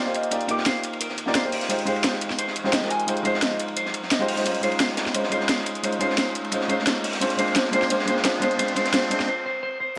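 Liquid drum and bass at 174 BPM, lush and soulful, this excerpt builds over chords moving from Cm11 through Fm7 and Dbmaj9 to Fm6/Ab, with an up-front grand piano of short sustain and delay accompanying a dark, clean, picked electric guitar playing arpeggios through a low-pass filter and tape echo. Two drum kits enter at 0.1 seconds, a produced, layered electronic kit with a cracking snare sitting up front, blended with a gritty, saturated acoustic breakbeat kit with dark cymbals, a high-tuned snare and a rolled-off top. A background riser climbs in from 1.5 seconds, and at 9.3 seconds the piano, drums and riser drop out for a brief break, leaving the guitar alone until 10.0 seconds, all in a small room ambience with plate reverb.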